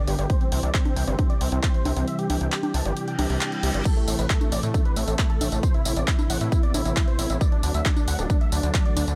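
A huge, euphoric supersaw lead carries the melody over a lush, warbling unison pad with chorus and a filter sweep in this soaring, bittersweet uplifting trance excerpt at 135 BPM in A dorian, moving through C, Am and D. A gritty, nasal distorted bass pumps beneath, joined by an up-front layered electronic kick and a dry, overdriven analog drum machine playing congas, crash, handclaps, hi-hat and tambourine. The kick drops out from 2.1 to 3.9 seconds while a reverse cymbal rises in at 3.1 seconds.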